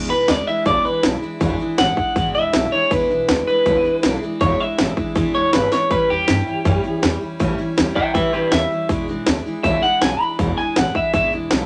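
Moderate studio reverb gives this short rockabilly cut a roomy sound, with the electric guitar and drums sitting up front. The rowdy, retro piece runs at 160 BPM in a straight 4/4 in E mixolydian, moving from E7 to A7 at 5.9 seconds and back to E7 at 8.9 seconds. An electric guitar through a small old amp carries a clean solo melody that is twangy, picked and lo-fi, with a slightly broken-up edge. Beneath it, a jumbo steel-string acoustic guitar plays bright, full-bodied picked accompaniment on fresh strings, while an upright bass adds woody, dark, thumpy pizzicato on gut strings. An electronic, layered techno drum kit drives the groove with an overdriven sound, a distorted kick, a cracking snare and warm hi-hats, and it throws in a fill at 5.7 seconds.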